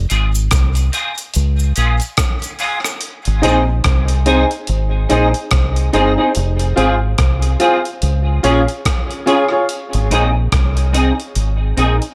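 A swung sixteenth-note groove at 72 BPM in 4/4 anchors this laid-back, spacious dub reggae excerpt in Ab major. A dark, round fingered electric bass and a gritty, compressed breakbeat kit with a thumpy kick, hi-hat and rim click sit up front, while a clean, picked semi-hollow guitar carries the accompaniment through ensemble chorus, a high-pass filter and tape echo. A distant cabasa with tape echo sits in the background until 3.0 seconds, and from 3.4 to 9.6 seconds a boxy grand piano adds echoing stabs over chords moving between Fm, Db and Ab, all under light reverb.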